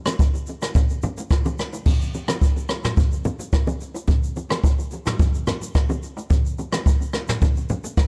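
Afrobeats at 108 BPM in 4/4 with a light 16th-note swing, this mellow, hypnotic fragment of a longer piece pairs an up-front acoustic brush drum kit, with its dark cymbals, boomy kick, rim clicks, shaker and toms, against bright, close and dry bongos and congas played with soft hands and trailed by tape echo, both running from 0.1 to 8.1 seconds in an echo-heavy mix bathed in studio reverb.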